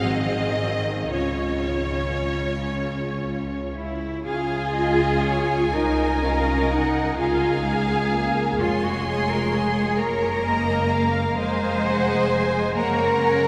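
Solemn and melancholic, this slow romantic movement for string orchestra unfolds in 6/8 at 36-44 BPM in dotted quarters, in Db major with rubato phrasing, cut from a longer piece. A focused violin section carries the melody over a second, smooth violin line set in the background, while a lush viola section supplies the accompaniment, and a rich, up-front cello section joins a soft-attacked, expressive double bass section on the bass, every part bowed with vibrato. A wet cathedral reverb with a 6.1 s decay surrounds the ensemble as the harmony moves from Ab to Db and on through Gb and Fm7.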